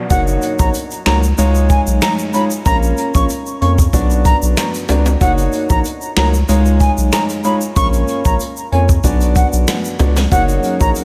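Dancehall at 94 BPM in F# major, this bouncy, sunny excerpt cycles through F#6, C#add9, A#m and Bm chords under a dreamy cathedral reverb. A bright, reedy baroque flute carries the melody with a crisp attack and delay, while an up-front concert grand piano with deep bass and subtle chorus accompanies, and a round, dark analog bass anchors the low end. A jazz brush drum kit with a boomy kick, finger snaps and rim clicks joins a close, dry egg shaker and ringing timbales, and a detuned sawtooth pad with sidechain pumping sits in the background, sounding only at the opening and again from 10.6 seconds.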